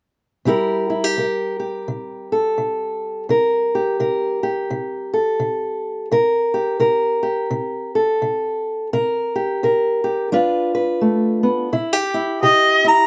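A mellow, distant harmonica with scooped notes and plate reverb steps up front at 12.4 seconds for a brief jazz-style solo over a dark, woody, boxy fingerpicked ladder-braced acoustic guitar on old strings, which carries this rollicking yet laid-back acoustic country blues in C mixolydian at 85 BPM with a swung 4/4 feel, moving from C7 to G7 at 10.3 seconds before this short cut from a longer piece settles on C.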